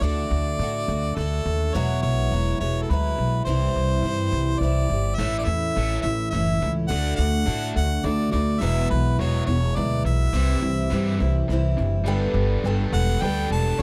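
A punchy harmonica carries the melody with light vibrato and scooped notes over a shimmering, octave-doubled twelve-string acoustic guitar and a growly, woody upright bass sitting up front, giving this 104 BPM rock waltz in 3/4 an open-road, nostalgic mood. A double-tracked, overdriven electric guitar riff enters at 5.2 seconds, and a very quiet, intimate upright piano with audible action noise appears at 12.1 seconds as the chords move to Gadd9. The sound is dry and close, like a 1970s studio recording, and the excerpt is cut from a longer piece.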